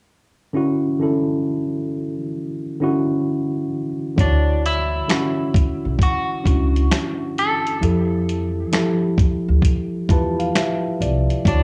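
Lo-fi hip hop at 66 BPM in D major, cosy and nostalgic, with a swung 16th-note feel. A worn, slightly out-of-tune tine electric piano with cassette-tape colour opens on its own over a Dmaj9 chord. At 4.2 seconds a gritty, compressed sampler-style drum kit with a thumpy kick, snare, hi-hat and finger snaps arrives up front, joined by a woody, growly pizzicato upright bass and a clean, scooped semi-hollow guitar melody bathed in spring reverb, while the harmony moves to Fmaj9 at 7.8 seconds and the piano adds a fill from 9.6 seconds, all in a light small-room ambience.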